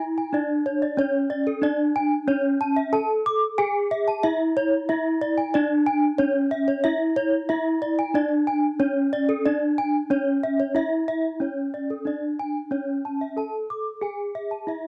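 A bronze gamelan metallophone opens at 0.0 seconds with a dark, smooth melody struck with a horn mallet, and a second metallophone joins at 0.2 seconds with higher arpeggios played with a wooden mallet and touched by slapback echo. Both instruments ring with the shimmering beats of paired tuning in a C# pelog scale, setting a hypnotic, brilliant mood at 92 BPM in a straight 4/4. The sound is dry and up front, like a close 1970s-style studio recording with light reverb, in a passage cut from a longer piece.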